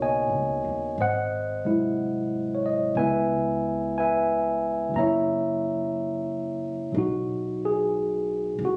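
Captured on a phone with a dry room sound, this short cut from an intimate, late-night jazz ballad in B major sways at a slow 60 BPM swing, with a clean, up-front tine electric piano through a combo amp voicing chords that move from Bmaj9 through C#m7 and F#7 before settling on B at 6.9 seconds, while a woody, pizzicato upright bass sits softly beneath it.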